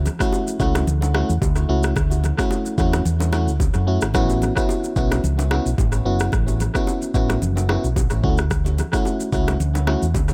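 A round, punchy fingered electric bass opens this sunny, joyful afrobeats excerpt, sitting dark and up front between F#1 and F#2 at 110 BPM in 4/4, with a gentle 16th-note swing. An electronic afro-pop drum kit arrives at 0.1 s, its deep kick, rim click and shaker pushed forward and roughened by overdrive, with analog delay trailing the hits. Bongos and congas enter at the same moment, bright and compressed with a saturated edge, tucked in the background and echoed by their own analog delay. From 0.2 s a glassy FM electric piano plays the accompaniment in the A3 to F#4 range, its bell-like, fast attack decaying into a warbling, vintage tone carried by chorus, delay and a faint noise layer. The harmony moves from Dmaj7 to A6 at 4.1 s and back to Dmaj7 at 8.2 s. The mix is dry, with little reverb, but heavy with echo, and the piano stops at 10.1 s just before the rest of the band at 10.3 s.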